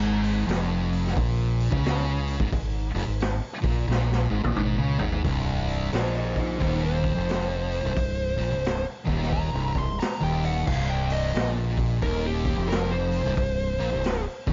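A thick, double-tracked fuzz guitar riff sits up front beside a growling, overdriven fingered bass in this heavy, hypnotic stoner and doom metal excerpt, swung and driven by a gritty small-room garage drum kit whose fill at 3.9 seconds leads into a dark, compressed fuzz lead guitar solo with tape echo from 5.9 seconds, set in a dusky mix with light reverb.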